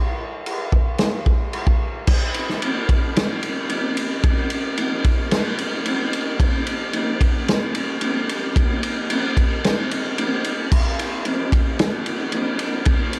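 Wistful yet blissful, this rock excerpt sits at 111 BPM in a straight 4/4 feel. A loose indie drum kit carries the whole piece, entering at 0.5 s and playing through to 13.2 s with kick, snare, ride and crash cymbal. The kit sounds acoustic and sits up front in a studio room, with a mid-forward tone and a rolled-off top end. A punchy kick and a medium-tuned snare drive the groove, while dark cymbals keep the brighter edges softened. The music shifts into a new section at 2.1 s, and light reverb lends a touch of space to this fragment of a longer piece.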